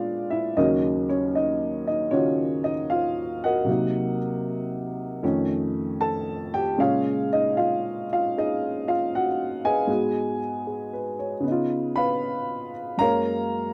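Solo jazz in Eb minor at 77 BPM with a swing feel, this short excerpt has a smoky, cool mood as a dark upright piano plays alone throughout its 13.7 seconds, ranging from Eb2 to Cb6. The piano sits up front with a mellow, woody, boxy character, long sustain and audible action noise that make it feel intimate. The harmony moves from Bb7b9 and Ebm9 through minor and dominant colours to settle on Gbmaj9 at 13.0 seconds, framed by light reverb in a dry, close 1970s-style studio sound.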